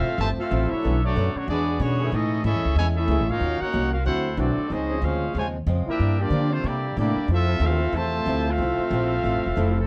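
Swinging and brassy, this short cut from a longer big band swing piece moves at a brisk 186 BPM in 4/4 with a gentle swing on the eighth notes. A brilliant, tight trumpet section with light vibrato and a slapback echo carries the melody, while a bright trombone section with a soft attack plays a present second line beneath it. Up front, a thumpy, woody pizzicato upright bass drives the bottom end. In the background sit a boxy, picked acoustic archtop guitar with old strings and a warm trombone section that enters at 0.8 seconds with sustained chords. The dry, close recording has a 1970s studio character, and the harmony moves through colourful changes such as Fmaj7, E13, Ebm7 and Dbmaj7 before settling back on Fmaj7.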